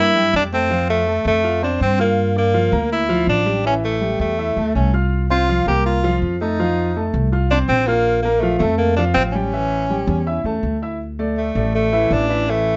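In a moderately ambient studio room with a soft, rolled-off top end, this short, passionate and danceable Latin excerpt in straight 4/4 features an up-front, punchy tenor saxophone singing the solo melody with pop-style vibrato, over a clear, polished concert grand piano whose intimate sound carries audible action noise, deep bass and long sustain, and a dark, woody pizzicato upright bass on gut strings thumping up front, all moving through changes like C7, Gm7 and A7 before shifting to a new section on Dsus2 at 11.0 s.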